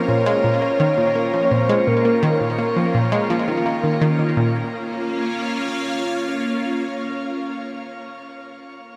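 A straight 4/4 pulse at 84 BPM in B-flat dorian drives this hypnotic, cosmic stretch of sequencer-driven ambient space music, cut from a longer piece. An up-front, bright analog pluck with detuned sawtooth and wave-folded tones and a filter sweep carries a low riff from 0.1 s. A dark, round, sub-octave synth lead sings a brief chorused, delayed melody with vibrato until 2.6 s, while a very quiet, resonant bubbling texture with random filter steps sits high until 4.4 s. Throughout, an up-front, evolving, morphing wavetable pad with ring modulation, ensemble chorus and phaser holds sustained chords through 8.0 s, bathed in a long, shimmering reverb.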